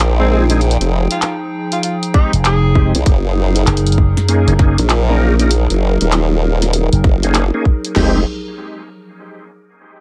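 Glitch hop with a swaggering, playful swing, built on a wobbling, detuned formant-sweep bass and a punchy slap bass with an envelope filter, two layered electronic drum kits with a cracking snare and a tight kick, reedy tonewheel organ stabs with key click, chorus vibrato and a slow rotary speaker, a nostalgic, lo-fi pad that pumps beneath them, and a distant, roomy tenor saxophone melody with light vibrato and dub echo that plays only until 3.0 seconds.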